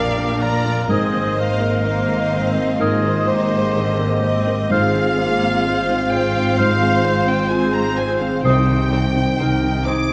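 This is a cinematic, emotional film score for full orchestra, moving at a rubato 64 BPM in 4/4 in F dorian, with a longing, sorrowful mood in a passage cut from a longer piece. A solo violin carries the melody with portamento and expressive vibrato over a lush, focused violin section, while a second violin section, a distant cor anglais, a clear clarinet and an airy, hollow flute add second lines, the clarinet and flute joining at 0.9 s. Underneath, a felt-muted upright piano with audible action noise plays a dark, intimate accompaniment alongside smooth violas, and a mellow horn section holds sustained chords. A very quiet concert harp rings out arpeggios, cellos and double basses supply the bowed bass, and timpani with soft mallets enter barely audible at 8.4 s as the harmony settles on C minor. Close, detailed microphones capture the ensemble in a moderate scoring-stage reverb.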